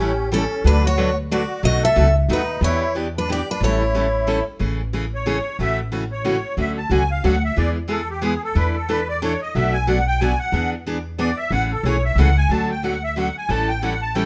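A reedy, shimmering musette accordion takes a solo from 4.6 s in this charming, swinging jazz manouche waltz, after a full-bodied, bright picked steel-string acoustic guitar carries the melody until 4.4 s, while a second picked steel-string guitar with audible finger squeak plays the accompaniment and a woody, thumpy pizzicato upright bass on gut strings sits up front in a light reverb.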